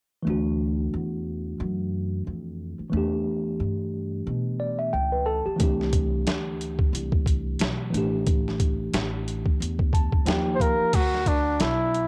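Swung sixteenths give this nocturnal, cool jazz-hop excerpt its easy lilt, as a worn, slightly out-of-tune tine electric piano with a cassette-tape tint lays down chords and fills over a woody, pizzicato upright bass. At 5.6 seconds a gritty, compressed, pitched-down boom bap kit arrives up front with a thumpy kick and medium-tuned snare, its hi-hat and crash carrying the same tape haze. At 10.6 seconds a veiled, breathy bucket-muted trumpet takes the melody with light vibrato and tape echo, all set in a light, homespun cassette ambience.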